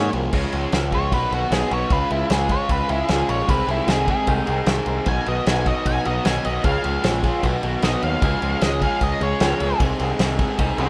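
An acoustic kit with a punchy kick, played with bundle sticks, drives this carefree, upbeat indie rock excerpt in a straight four, its kick, snare, ride and crash sounding in a small room on a rough home-demo mix. An up-front, growling picked bass with overdrive sits under two riffing guitars: one compressed and overdriven, the other a lo-fi garage part with lush chorus tucked in the background. A dark, fuzzy octave-fuzz lead solos from 0.3 seconds, and a very quiet vintage string machine adds slow-attack sawtooth chords from 6.7 seconds.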